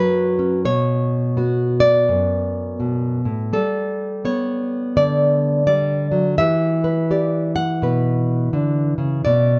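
Intimate and melancholic, this short folk passage, cut from a longer piece, features a solo nylon-string guitar played fingerstyle at 84 BPM in 4/4, with a gentle swing on the eighth notes. The fingerpicked guitar sits up front, its tone full-bodied and deep in a classical way, ranging from F#2 up to F#5. The harmony moves from Bmadd9 to Gadd9 at 3.5 seconds and settles on Em7 at 6.4 seconds, lending the brief 9.6-second span a wistful color. The instrument is tuned to A4 = 437 Hz, and a light reverb adds a soft sense of space around the close, acoustic sound.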